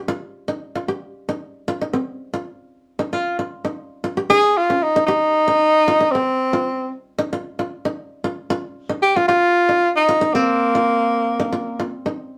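This afrobeat piece moves at a hypnotic, driving 114 BPM in a straight 4/4. A koto plays arpeggios from 0.0 s across the whole cut, sitting between C4 and G4 with a woody, dry, warm acoustic tone; it is played with fingerpicks, and it sits up front though lower in level than the lead. At 4.3 s a breathy tenor saxophone takes the solo melody, ranging from Bb3 to Ab4 in a clear pop style with vibrato and scooped notes, placed prominently up front until 11.9 s. The harmony stays open at first, then settles on C7sus4 at 8.5 s. The band plays live in one room with moderate studio reverb, and the recording is a short section cut from a longer piece.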